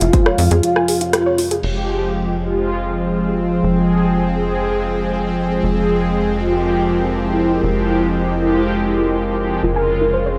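Up-front, brassy analog pad stabs enter at 1.6 s with lush chorus and tape echo, driving this cinematic melodic techno excerpt over a smooth, expressive synth lead under a filter sweep, an evolving, morphing wavetable pad with phaser and 12-bit grit, a tight, punchy sequencer bass, a tense, nasal string-like drone, and a soft, round pluck with tape echo, while a house drum kit with metallic, low-passed hats plays only until 1.7 s, and sidechain pumping breathes through every part in a dry, gritty hardware sound.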